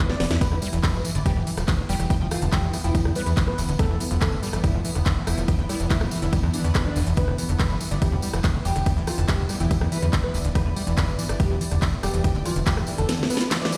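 Psychedelic and intense, this 13.8-second excerpt of psychedelic trance drives along at 142 BPM in a straight 4/4 in E minor. A punchy electronic kick sits up front beside a plucky analog bass, funky and sawtooth-edged with a moving notch. The techno kit adds a cracking snare, smooth hats, handclaps, ride and rim clicks, while a jingly, close and dry tambourine rides on top, and brief drum fills mark 0.1 and 13.1 seconds. Above them a screaming distorted acid line carries the riff, squelchy and aggressive with resonant filter sweeps, chorus, tape echo and sidechain pumping, and a thick, detuned unison lead sings the melody through phaser, dub echo and vibrato. Very quiet touches fill out the mix: a juicy resonant blip pluck playing a second line, and a bright, morphing wavetable pad holding sustained chords. Behind them, a deep, moody ambient pad drifts in the background with chorus and built-in reverb, and the whole mix carries a large studio reverb, as if played on a big sound system in a bare room.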